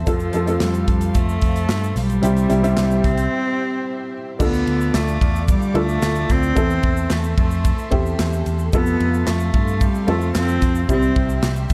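A straight 4/4 groove from an up-front, polished studio drum kit with bright cymbals, a tight kick, handclaps and a grainy tube shaker in the background carries this earnest, bittersweet piano-driven pop passage, cut from a longer piece, pausing for a short break at 3.3 seconds before the second section opens at 4.4 seconds. A worn, woody, slightly detuned upright piano and a punchy, amped picked electric bass outline the F, C, Dm and Am/E changes. A close, earthy solo cello with light vibrato sings the melody up front while a lush, distant string ensemble holds sustained chords, all set in a dark production with light reverb.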